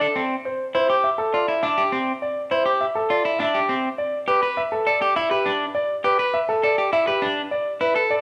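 A twangy electric guitar, picked at the edge of break-up, stands up front in this short cut from a longer piece of minimalist classical pattern music, spinning arpeggios in the middle register from 0.0 to 8.1 seconds. A brilliant concert grand piano, also close and present, carries the melody just above it from the start until 8.2 seconds. The mood is hypnotic and propulsive, moving at 102 BPM in a straight 3/4. After a chordless opening, the harmony settles on Fsus2 at 0.7 seconds and shifts to Em7 at 4.3 seconds. Close, detailed microphones catch both instruments, set in a moderate recital hall reverb with a 1.6-second decay.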